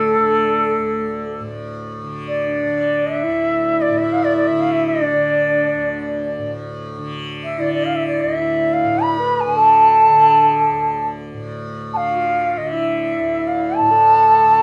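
Hindustani classical music in free time, solemn and meditative, presented as a 14.6-second excerpt from a longer piece in which all three parts sound throughout. A bright, reedy bansuri carries the tongued, vibrato-laden melody up front, while a close-miked alto saxophone plays a warm second line beneath it, also with vibrato. Quietly underneath, a softly plucked tanpura holds a buzzing, shimmering drone, and a moderate small-room reverb surrounds the performance.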